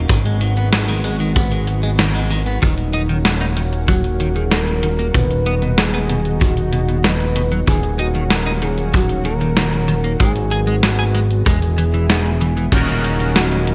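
A straight 4/4 pulse at 95 BPM drives this cinematic synthwave excerpt in Eb phrygian, where a punchy acoustic kick and a tape-colored 12-bit drum machine, with gated-reverb snare, hi-hat and crash, sit up front over a fat, saturated analog bass and a lush, warbling unison pad pumping under sidechain, while a clean picked electric guitar arpeggiates through spring reverb and delay until 2.6 s, when a smooth, dark synth lead with vibrato takes the melody and a second chorused guitar plays a riff, before glossy pulse-wave polysynth stabs arrive at 12.7 s on an Ebm7 chord, set in bright 1980s-style digital production.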